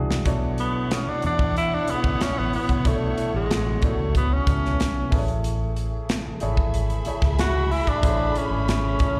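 A straight 4/4 groove at 93 BPM opens with a drum fill from a punchy, up-front studio kit and a dark, round, foam-muted electric bass, setting up lush, romantic 1970s-style soul in which a breathy tenor saxophone with subtone, scooped notes and light vibrato carries the solo melody from 0.6 seconds, backed by natural baby grand piano accompaniment with slapback echo, a bowed string section gliding with portamento on a second line, and a silky, phased string machine entering very quietly at 1.2 seconds over a Bm11 to Amaj7 change, heard through a venue PA with recital hall reverb.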